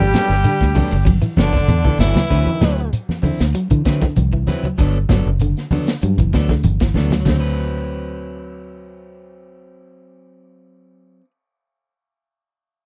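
A raspy tenor saxophone carries the melody over a clear, very quiet trombone and a gritty baritone saxophone in this funky, joyful afrobeat excerpt at 97 BPM in D mixolydian. It is driven by a round, foam-muted fingered bass, a saturated breakbeat drum kit with dark cymbals, grainy shekere and ringing low-tuned congas, while two twangy, slightly broken-up electric guitars play spring-reverbed arpeggios alongside stabs over Gmaj9 and D13. The horns drop out at 2.9 seconds, and the stabs and bass carry on after the other parts stop, the stabs lasting until 11.3 seconds in a dry, close 1970s-style studio sound.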